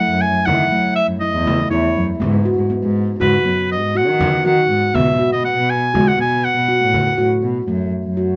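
Contemporary instrumental chamber music in 11/8 at 241 BPM in eighths, hopeful and playful, this brief extract cut from a longer piece sets a bright, up-front oboe melody with light vibrato over ringing, airy handpan arpeggios played with soft fingertips. A dark cello carries the bass, bowed sul tasto with a woody, close tone, while a deep frame drum sits distant in the background from 0.2 seconds. The harmony moves from F#m7 through G#m7 and B5 to F#m in a moderate studio reverb, with the oboe dropping out at 7.4 seconds before the handpan and cello ring on to 8.4.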